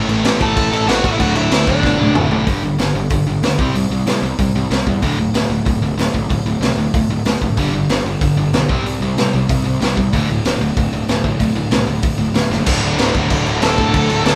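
A raw, live-in-one-room sound with light reverb frames this rowdy, upbeat punk rock cut from a longer piece, with a punchy, mid-forward garage drum kit up front and a growly fuzz bass underneath. Three distorted rhythm guitars churn out the riff in the background: a bright, tight one, a sludgy overdriven one, and a very quiet double-tracked sludgy part that drops out between 2.5 and 7.6 seconds. They play over an A5 and D opening that gives way to a G5, C5 and D5 chord movement in the middle section. A bluesy, dark-toned lead guitar appears near the start and returns at 13.6 seconds, with drum fills marking the turns into and out of the middle section.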